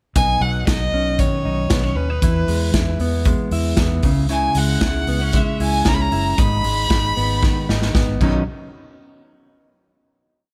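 This short jangly indie pop piece feels bright and nostalgic, moving with a straight feel through a single verse over Badd9, E, C#m and G#m chords before closing on a final hit at 8.5 seconds. A raw garage drum kit sits up front in a small, pumping room, playing a dance-floor indie beat with off-beat open hats. Its cymbals are dark, the kick boomy and the snare medium-tuned, and the kit sounds saturated and gritty with a rolled-off top. A vintage electric bass, foam-muted, round and amped, drives steady eighth notes underneath, while a clean electric guitar, dusky in tone and also up front, plays a fingerpicked roll pattern of arpeggios. A single bowed violin carries the melody with smooth, even vibrato, building it from motif-based call phrases. The drums launch a fill at 7.4 seconds leading into the ending, and the mix stays dry with little reverb.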